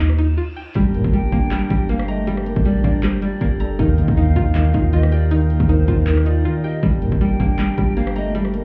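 Hard-hitting and brooding, this half-time trap and hip hop passage in G minor runs at 158 BPM and is cut from a longer piece, moving between Ebadd9 and Gmadd9 chords. A distorted 808-style bass sits up front, heavy and saturated with a fast attack, while an overdriven trap kit of hard-clipped kick, bright hats, handclaps and rim clicks drives from the opening moments, with brief breaks at 0.4 and 6.5 seconds. A twangy, string-like resonator pluck plays arpeggios throughout, its bright sawtooth edge shaped by chorus, a low-pass filter sweep and tape echo. From 0.8 seconds a dark, boxy concert grand piano adds filtered accompaniment beneath sustained chords from a nasal, breathing harmonium, after a faint electronic reverse cymbal leads in. A breathy bamboo pan flute with vibrato and a soft chiff carries a second line from 1.1 seconds, trailed by tape echo, and the whole mix sounds muffled as if heard through a wall, bathed in club reverb.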